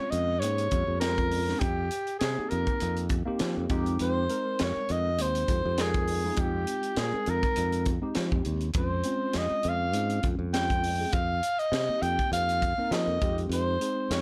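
Light reverb wraps this driving, funky slice of electric jazz fusion, cut from a longer piece and riding a lightly swung sixteenth-note feel. Up front, a breathy soprano saxophone carries the melody with a mellow, whispered tone, soft attack and light vibrato, while a clean tine electric piano with analog chorus plays accompaniment through chords such as Bbm9/F, F9sus4, Fm9 and Dbmaj7#11/F. A bright, growly, punchy fingered electric bass and a crisp, saturated, gritty drum kit in a small, pumping room, with high-tuned snare, tight kick and hi-hat, enter almost together, the drums at 0.1 seconds, and hold the groove to the end at 14.2 seconds.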